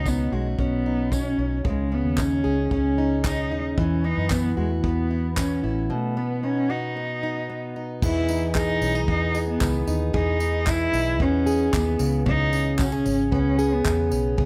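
Easy-going and heartfelt, this excerpt of acoustic pop moves at a straight 113 BPM in E major. A warm, focused bowed cello carries the melody up front with vibrato, over a picked plugged-in steel-string acoustic guitar with audible finger squeak, a dark, round, foam-muted fingered electric bass, and a soft brush kit with a punchy kick, crash cymbal, handclaps and tambourine, plus a jingly tambourine sitting in the background. The dry-sounding arrangement moves through Badd9, C#sus2 and Esus2 to a break on B at 5.9 seconds, then settles into Emaj7 and C#m7 from 8.0 seconds.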